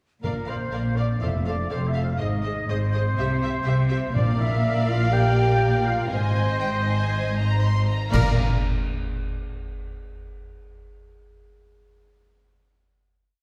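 This is a heroic, adventurous cinematic film score cue in Bb lydian, moving at 122 BPM in a straight 4/4. A clear, intense violin section carries the melody with vibrato and sounds distant, playing repeated notes and chords in the rhythm of the tune and answering at phrase ends. A pure-toned concert flute, a very quiet, roomy oboe and a solo trumpet double the tune at the octave, while a second violin section with a smooth top and a lush viola section fill in chords behind it. A mellow French horn section holds sustained chords, and close, rich cellos set bass on the beats, doubled by woody double basses that sit lowest and loudest in the mix. Timpani with soft mallets strike single round strokes on the bass notes, drop out at 4.8 seconds and return briefly at 8.1 seconds. At 4.2 seconds dark cymbal swells, crashes and concert bass drum strokes come up front. The whole band accents at 8.1 seconds, where the harmony drops away into a final chord that rings out in the scoring-stage reverb until 10.1 seconds.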